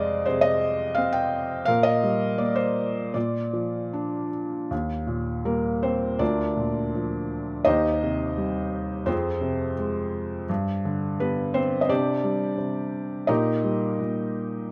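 A felt-muted upright piano plays alone from the start in this warm, hopeful classical fragment of lyrical solo piano in Eb major, moving with a rubato feel between 74 and 88 BPM in 4/4; its soft, intimate, vintage tone sits up front under close, detailed microphones and light reverb, spanning D2 to G5 as the harmony settles from Fm and Bb onto Eb at 4.7 s, where a new section begins and wanders through Cm/Eb, G and C5 before reaching Eb/Bb at 13.3 s.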